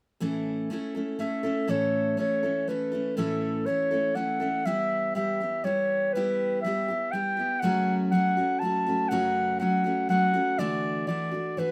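Folk in waltz time, pastoral and peaceful, with a bright, full-bodied picked steel-string acoustic guitar accompanying from 0.2 seconds, joined at 1.2 seconds by a mellow, classical-style clarinet that takes an up-front solo from 1.7 seconds over chords moving from A through Em and F#m to Dadd9, all set in a modest small-room reverb in this cut from a longer piece.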